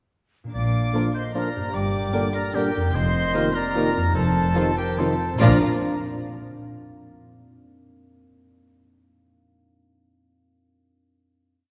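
A violin section with a soft attack carries the floating, sul tasto melody of this festive, sweeping orchestral ballroom waltz in Bb major at 148 BPM, its rubato pulse moving from Bb through G minor and F7sus4 to a final Bb chord at 5.4 seconds. A flute doubles the tune in sixths and in unison, an oboe with light vibrato doubles it at the octave, and a fingerpicked concert harp rings out rolled chords and arpeggios from 0.4 seconds, while smooth cellos hold the bass on the beats and intimate double basses double their bass line. From 0.9 seconds a clear second violin section, rich violas, clarinet, bassoon and tight trombones add very quiet after-beat and sustained chords, mellow French horns join them in the background, and the whole piece sits in a long concert hall reverb with a dark, warm production.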